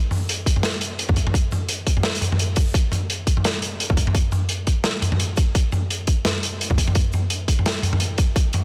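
Drum and bass at 171 BPM in 4/4, with a half-time feel and a swung sixteenth groove, cut from a longer piece and carrying a tense, dark mood. A crunchy, saturated breakbeat kit of hi-hat, shaker, medium-tuned snare and toms sits up front with a gritty, mid-forward studio-room character and a rolled-off top, joined at 0.5 seconds by a hard-clipped electronic kick. Light reverb surrounds the drums, and the recording has a dense, heavily limited modern master.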